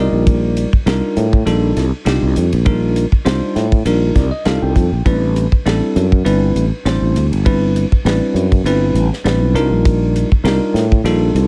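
A close, up-front studio mix set in studio reverb carries this short cut from a longer electric jazz fusion piece, intense and nocturnal at 100 BPM in 4/4 with a light swing on the sixteenths. A bell-like, clean tine electric piano heard through its built-in speakers comps over Cm11 and Am11 chords and slips in fills at the start and again from 3.9 to 5.1 seconds, while a growly, direct fretless bass sustains its low notes underneath. A tight funk kit joins at 0.3 seconds, dry and acoustic, with a high-tuned snare, a tight kick, hi-hat and ride.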